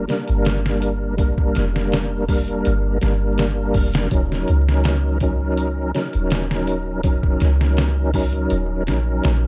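A lightly overdriven tonewheel organ with key click, slow rotary speaker, chorus vibrato, tremolo and tape echo sits up front in this dark, hypnotic trip hop excerpt at 82 BPM, moving from Gm to Ebm7 at 4.1 seconds over a deep, round 808-style bass and a pitched-down, compressed sampler-style drum kit with a thumpy kick, medium-tuned snare and hi-hat, all set in a dry, gritty recording dusted with vinyl crackle.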